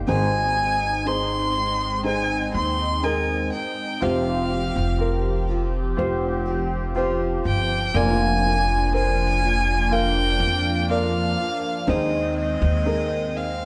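This pop ballad fragment, cut from a longer piece, feels hopeful and heartfelt, moving at an unhurried, straight pace in four. A dark, woody violin carries the melody up front from 0.1 s, one bowed player singing with vibrato high above the band. Underneath, a felt-muted upright piano gives soft, mellow, intimate accompaniment, while a picked steel-string acoustic guitar with fresh strings spins arpeggios in the background. A plucked upright bass sits up front with a thumpy tone, and a smooth, detuned sawtooth pad holds sustained chords with a soft attack, long release, a moving notch and chorus. The harmony passes from Ab through Fsus2 and Bb/F to Ab/Eb, and the whole group sounds like a band playing live together in one large studio with moderate reverb.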